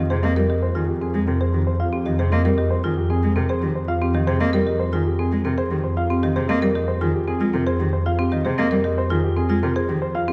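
Hypnotic and propulsive, this short excerpt of minimalist classical pattern music moves at 115 BPM in a straight 4/4, rooted in F minor and held on a single Fm11 chord for its full 10.3 seconds. A dark, mellow baby grand piano carries the melody in an intimate, natural tone with short sustain, and the noise of its action is audible beneath the notes. Marimba arpeggios sit up front, woody and struck with medium hard mallets on padauk bars. A solo cello, bowed with vibrato and a focused, rich voice, supplies the accompaniment and drops out at 10.0 seconds. Underneath, a bowed studio double bass section plays a low F, up front with a smooth top. A moderate scoring stage reverb and a dark, warm production lend the whole a spacious, shadowed glow, and the passage is cut from a longer work.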